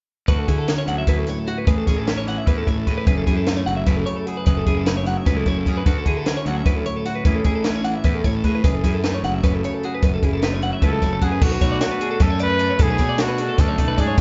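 At 0.3 s a clean electric guitar, a twelve-string electric guitar, a fuzz bass and a compact cocktail drum kit start together in this wistful, playful math rock and midwest emo excerpt, which runs at 302 BPM in eighths in a straight 7/8. The bright clean guitar carries the accompaniment through Dmaj9, Amaj9 and F#m9 chords. Above it, the compressed, twangy twelve-string spins high picked arpeggios. The fingered bass growls underneath with overdriven fuzz, while the acoustic drums sit dry and up front, with a punchy kick, a high-tuned snare and dark crash and hi-hat cymbals. At 10.8 s a breathy trumpet steps in with a whispered, intimate solo melody, soft in attack and touched with light vibrato, and at 11.4 s the harmony shifts to Bm7 for a new section. A moderate recital hall reverb places the sound in a church-like space with a rolled-off top end.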